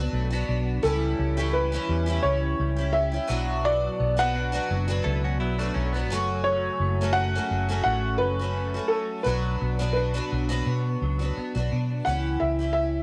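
A lightly swung 86 BPM pop groove in B minor carries this tender, wistful home cassette excerpt, where a round, punchy muted bass sits up front beneath a shimmering double-tracked twelve-string acoustic guitar and a background clean electric guitar with ensemble chorus playing arpeggios, while a worn, slightly detuned upright piano enters at 0.8 seconds with the melody and a twangy, scooped second electric guitar line appears briefly at 5.0 seconds, all in a lightly reverberant room.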